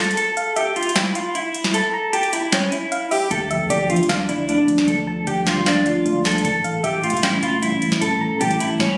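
A brooding, hard-hitting trap piece in D harmonic minor at 153 BPM with a half-time feel opens on a dark, slightly broken-up electric guitar melody placed up front with subtle chorus and delay. Beneath it, a booming analog drum machine pounds out a deep kick, crisp snare, handclaps and metallic hats in a short room, while a soft, round pluck with chorus and delay floats in the background. At 3.3 seconds a mellow, clean tine electric piano and a deep, boomy 808-style bass arrive as the harmony moves from Dm to A7, and the phone-in-the-room recording carries light reverb and a digital ambience.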